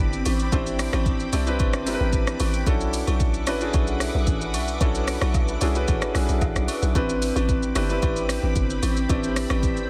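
Soulful and deep, this amapiano excerpt moves at a straight 112 BPM in 4/4, in A dorian, shifting from Am11 to Bm11 at 2.7 seconds and back to Am11. A hollow, bouncy log drum bass sits up front with a fast attack, a decaying FM tone and a noise layer, alongside an electronic afro-pop drum kit with a deep kick, metallic hats, rim click and shaker, with soft clipping on the snare. A polished concert grand piano with a rich low end plays the accompaniment close to the listener, while a silky vintage string machine holds soft, mellow sustained chords with a slow attack, long release, phaser, ensemble chorus and sidechain pumping. Agogo bells and woodblock, with tube shaker and group handclap, add a saturated, compressed acoustic texture from the background. At 6.9 seconds a woody, dark marimba played with medium mallets on rosewood bars enters with delayed stabs, all within a small room ambience and a dense, heavily limited modern master.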